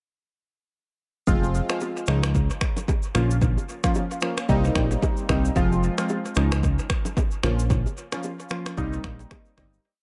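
Afrobeats with a smooth, sultry mood, this short, complete piece moves in a swung 4/4 groove and sits in a minor key, cycling through Fm, Dbadd9, Bbm and Cm7. The fat analog bass sits up front in the mix with a thick, dark, detuned sawtooth tone, playing a bouncy syncopated line with fast attack and sustained notes. An electronic afro-pop drum kit sits up front with a deep, soft kick, syncopated rim clicks layered with finger snaps, and shaker, all carried by dub echo. Warm, round analog keys play syncopated sawtooth chords with a filter sweep, fast attack and decaying notes, colored by chorus, phaser and dub echo. Very quiet congas and bongos add a bright, close, dry acoustic pattern underneath. The mix is echo-heavy with little reverb and a dulled top end, and everything enters together at 1.3 seconds before the piece fades out from 7.7 seconds to its end at 9.8 seconds.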